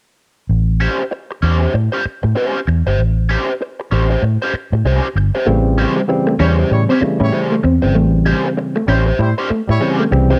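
A dark, lightly reverberant funk excerpt in A mixolydian at 97 BPM with a swung sixteenth feel struts energetically as a round, foam-muted fingered bass sits up front over an A7#9 chord, joined at 0.8 seconds by a crunchy overdriven guitar with wah, before a lo-fi, slightly broken-up guitar riff and worn, slightly out-of-tune tine electric piano stabs enter at 5.5 seconds and a distant horn section with light vibrato adds a second line from 6.4 seconds.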